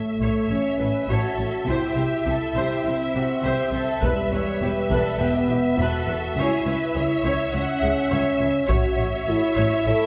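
A heroic, triumphant stretch of epic orchestral film score, cut from a longer piece, opens with a warm violin section singing the melody on E5, its soft attack and expressive vibrato set against a mellow French horn section placed up front in sustained chords. Almost at once the lush bowed violas, cellos and double basses enter: the violas supply an even accompaniment, while the focused cellos sit in the background and share the bass with the rich, smooth double basses. A second violin section joins at 0.5 s with a distant second line. Heavy-stick taiko drums, close and dry, sound a brief hit near the start and return at 4.0 s to drive the rest of the passage. The harmony moves from A through C, E minor and C-sharp minor before settling back on A, all wrapped in a wet scoring-stage reverb heard from further back in the hall.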